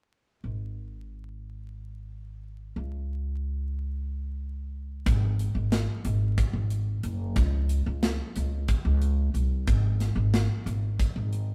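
A pizzicato upright bass opens this cut from a longer progressive instrumental, playing alone from 0.4 seconds in a low register with a woody, growly tone from its steel strings, sitting up front in the mix. The music moves in an uneven 7/8 meter with a straight feel, giving it an intricate, driving character from the start. At 5.1 seconds a tight metal drum kit joins, bringing hi-hat, a tight kick and a medium-tuned snare, and the second section begins. The kit sounds acoustic, airy and polished, captured in a big room and placed up front beside the bass. The two parts play together until the cut ends at 11.5 seconds. The band sounds as if it is playing live in one room, with light reverb and a layer of vinyl crackle over the recording.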